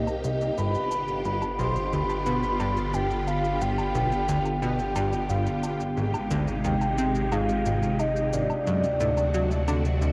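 A huge, wet reverb with a nine-second tail and the warbling pitch drift of a worn old cassette tape wrap this hypnotic, expansive excerpt of sequencer-driven ambient space music, moving at 89 BPM in a straight 4/4. A soft, octave-layered synth lead carries the melody between D5 and C6, its round triangle-and-sawtooth tone thickened by a sub octave and colored with chorus, tremolo, vibrato and analog delay. Beneath it, a swirling vintage string machine holds sustained chords with a slow attack and long release, bright and up front through ensemble chorus and phaser. A punchy, funky analog bass plays a riff with a fast filter pluck, its sawtooth and square waves edged with ring modulation, subtle chorus and delay, while a deep sine sub bass sits underneath. Overdriven electronic shaker and woodblock enter at 0.1 seconds, sitting low in the mix with analog delay, as the harmony moves from Cm7 through G7 to Abmaj7 and D7.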